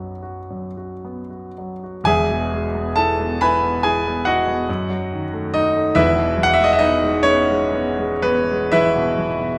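An intimate, up-front concert grand piano with deep bass, long sustain and audible action noise rings in a moderate recital-hall reverb in this serene, tender romantic nocturne excerpt for solo piano, unfolding in E major in a rubato 9/8 at 37-50 BPM in dotted quarters, reaching from E1 to B5 as it moves from B to E, through D#dim/F#, and settles back on E at 6.0 s.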